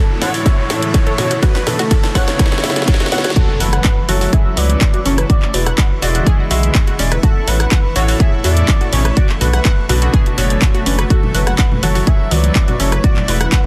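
A dreamy, expansive progressive house excerpt opens on a riser and swell building over a drum fill, with a smooth, expressive sawtooth lead, a shimmering pad and tight, detuned sequenced arpeggios already in play, joined within the first half second by clear concert grand piano stabs with audible action noise, a deep, saturated sub bass, a cracking snare with handclaps, hi-hat and rim click, and a punchy kick. It then drops at 3.4 seconds on an impact, bringing a very quiet glassy texture of drifting overtones from 4.5 seconds and soft-handed congas in the background from 11.2 seconds, all under a dense, heavily limited master with little reverb and sidechain pumping on the pad, arpeggios, piano and bass.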